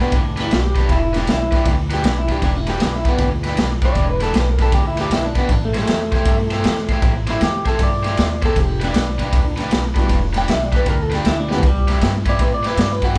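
Mournful and brooding, this electric blues shuffle in E minor rolls along at 156 BPM with a swing feel, a short cut from a longer piece. A clean, slightly broken-up electric guitar through a small old amp carries the melody as a compressed, picked solo throughout, while a bright, overdriven garage guitar digs into a riff beneath it. An upright bass with gut strings gives a woody, thumpy pizzicato floor, and a saturated, gritty drum kit sits up front with punchy kick, dark cymbals and a pumping small-room sound, dropping in a fill at 11.4 seconds. At 10.0 seconds a mellow grand piano slips in the background, its action noise audible and intimate. The chords move from Em7 to Am7, back to Em7, and land on Cmaj7, all captured as a band playing live in one large room with a moderate reverb.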